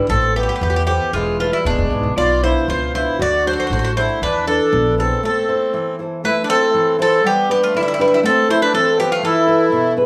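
In a straight 2/4 at 118 BPM that gradually speeds up, this short passage from a longer piece is Greek folk in A minor, played by a bouzouki band tuned to A4 = 442 Hz, with a bittersweet, moody air. The picked Greek bouzouki carries the melody up front, its metallic double strings and some octave-doubled courses ringing out. Beneath it, a reedy accordion with slow beating supplies a second line, while a bright, fingerpicked classical nylon-string guitar fills out the accompaniment. A woody, dark pizzicato upright bass sits prominently at the bottom until 5.1 seconds, and a brief break follows from 5.2 to 6.2 seconds before the opening theme returns. The harmony moves through chords such as Amadd9, E, Bdim, D and E7, and the band plays live together in a large studio with a moderate reverb.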